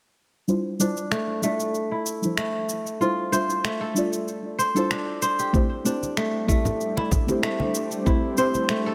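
A lush hall reverb surrounds this mystical, earthy excerpt of organic downtempo in D minor at 95 BPM, with a light 16th-note swing moving from Dm11 to Am7. A ringing, crisp kora plays fingerpicked arpeggios up front through a low-pass filter sweep and digital delay, over deep, dark chord stabs that warble with chorus, delay, sidechain pumping and their own filter sweep, while tape-tinged electronic shaker and finger snaps keep time. A gritty, thumpy kick arrives at 5.5 seconds, bright, close congas join at 6.0 seconds, and an ethereal, airy pad with detuned unison, ensemble chorus and slow-attack sustain drifts in behind everything else at 6.4 seconds.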